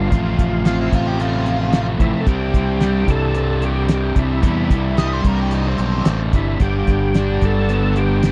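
Sunny and driving, this short classic rock cut at 111 BPM in C major pairs a bright distorted guitar riff and a sludgy overdriven guitar with a growling, up-front fingered bass and a cloth-damped, thuddy drum kit with a fat snare and tight kick, while a thick, gritty tonewheel organ carries the melody through a slow rotary speaker and chorus vibrato, and a dark octave-fuzz lead guitar adds a second line from 0.7 to 6.2 seconds over F/A, C and G chords in a dry, close 1970s-style studio sound.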